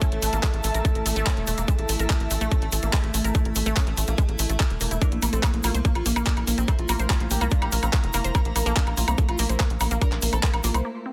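A driving straight 4/4 pulse at 144 BPM sets this alien, psychedelic trance excerpt in motion, with an overdriven, up-front electronic kick, a layered, overdriven garage kit of handclaps, hi-hat and woodblock, a grainy egg shaker, and a tight, nasal sequencer bass pushing underneath. Over the harmony moving from A5 to Bb5, a lush detuned unison pluck riff runs through digital delay and sidechain pumping, while an evolving wavetable pad with phaser and an airy, breathy chorused pad hover in the background. At 5.0 seconds a screaming, guitar-like overdriven synth lead enters with distortion, phaser and dub echo, and the dense, heavily limited mix drops into a break at 10.8 seconds.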